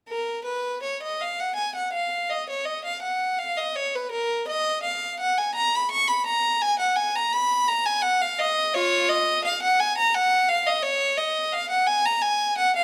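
Grave and flowing, this short excerpt from a baroque-style suite movement for unaccompanied violin unfolds in a rubato 6/8 at about 56 BPM, starting in Eb minor before turning to F# major at 8.7 s. The single bowed violin sounds clear, smooth and even, with vibrato, ranging from E#4 to Db6. It sits up front and close in the detailed recording, touched by light reverb.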